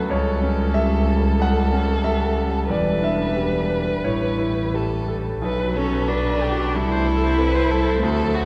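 This hopeful, tender neoclassical passage opens with a bright, up-front concert grand piano, a distant solo violin carrying the melody with vibrato and portamento, a close, expressive cello on a second line, a bowed double bass, and a very quiet, dark, evolving ambient pad holding sustained chords. The music moves at 92 BPM in 4/4 with a rubato feel, and at 5.4 seconds a smooth, even viola joins in the background as the harmony arrives on Bm7. A long, wet cathedral reverb gives the recording the spacious sound of a church or concert hall.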